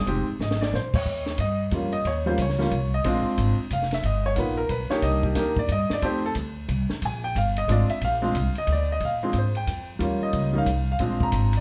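A sophisticated, relaxed jazz piano trio excerpt swings in 3/4 at 181 BPM in Bb mixolydian, with a warm concert grand piano taking the melody as a solo from 0.1 s, its intimate tone, audible action noise and plate reverb set up front beside a woody, growly pizzicato upright bass, while a compact cocktail drum kit with dark cymbals, a high-tuned snare and a punchy kick plays more quietly and drops a brief fill at 0.4 s, all in a wet club room over changes moving from Fm7 through Eb7, Cm7 and F to Bb7.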